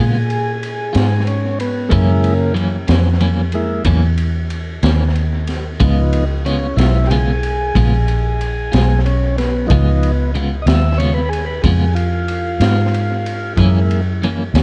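Cut from a longer piece, this recording has the murky, echo-drenched sound of a cassette tape, its top end dulled and a light reverb hanging over the mix. It's a rollicking yet soulful slow blues in a straight 12/8, moving between Db7 and Gb7. A tonewheel organ carries the lead with smooth sustained chords, its key click audible and a slow rotary speaker turning beneath it, until it drops out at 14.0 s. A clean electric guitar adds compressed, scooped, picked accompaniment shimmering with tremolo, while a vintage muted fingered electric bass sits up front with a round, foam-muted, amped tone. From 0.3 s a crunchy breakbeat kit joins with a punchy kick, a high-tuned snare and dark ride cymbal, its saturated, gritty sound trailed by tape echo.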